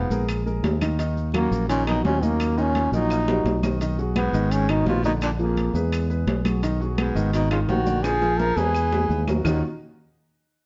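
Opening on trombone, baritone saxophone, grand piano and a growly, punchy fingered electric bass, this sophisticated, fiery Afro-Cuban jazz excerpt in Eb minor at 170 BPM sets a bright, scooped trombone melody with slapback echo and plate reverb over a clear, soft-attacked baritone saxophone line and intimate piano with audible action noise, while congas, maracas, claves and ringing metal-shelled timbales drive the groove and drum fills arrive at 3.1 and 8.0 seconds before an Ebm9 chord lands at 9.5 seconds.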